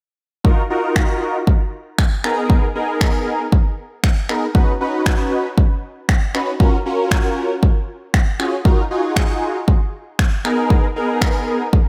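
Energetic and driving, this dance-pop excerpt moves at 117 BPM in a straight 4/4 and sits in Eb minor. A big, bright polysynth carries the accompaniment from 0.4 seconds, its fat, nasal sawtooth tone detuned and bold, with a moving notch, fast attack and sustained chords held up front. Ensemble chorus, sidechain pumping and slapback echo thicken the synth as it cycles through Ebmadd9, Abmadd9, Badd9 and Gbmaj7 before returning to Ebmadd9 and Abmadd9. A pop drum kit of finger snaps and a punchy kick enters alongside it, electronic and layered, overdriven and re-recorded in a small room for an up-front presence. The mix carries light reverb and a digital ambience, and the drums play through to 11.8 seconds as the section closes.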